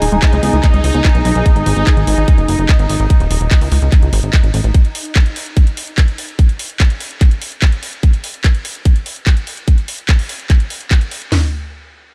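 A punchy, up-front analog bass anchors this driving, psychedelic trance excerpt, its funky filter plucks decaying in the low register for the first 4.7 seconds. Alongside it, a tight-kicked drum kit with a cracking snare, toms and metallic hats runs up front through the whole passage, doubled by a quieter layered kit adding handclaps and hi-hat, both carrying the feel of a small room. A bright, bubbling texture of randomly stepping filters holds sustained chords with chorus, reverb and sidechain pumping, while a very quiet, squelchy acid bass riff carries a filter sweep through the opening 1.3 seconds. An ethereal, airy pad sits in the background with ensemble chorus and pumping, and a barely audible downlifter passes at the start. The mix carries a light reverb, giving the straight groove a compact, focused sound.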